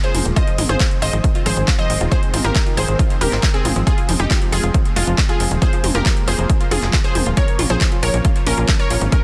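Uplifting trance in a driving, bittersweet mood, this short cut from a longer piece sets a lush, detuned unison pluck melody over a dark, mellow concert grand piano second line in the background, a silky, very quiet analog string pad holding sustained chords, and a round, chorused and phased analog pluck running arpeggios, while a tight, nasal sequencer bass and a techno drum kit with metallic hats, handclaps and toms pump under sidechain, joined at 0.4 s by a punchy, up-front electronic kick, all in a dry, dense, heavily limited modern master moving from Ab to Fm to Bbm.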